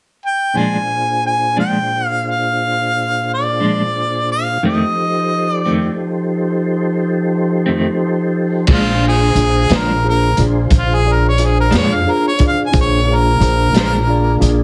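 A clear harmonica with scooped notes, light vibrato, overdrive and slapback echo opens this gritty, swaggering slow blues in 12/8 at 59 BPM in Bb mixolydian, over a dark, picked electric guitar with tremolo and smooth tonewheel organ chords turning through a slow rotary speaker with key click. At 8.7 seconds the harmonica moves into a solo as a barky electric piano through a phaser, a woody, thumpy pizzicato upright bass and a saturated breakbeat kit with a tight kick and dark cymbals join in. The whole has a heavily compressed, radio-like sound with light reverb, and this passage is cut from a longer piece.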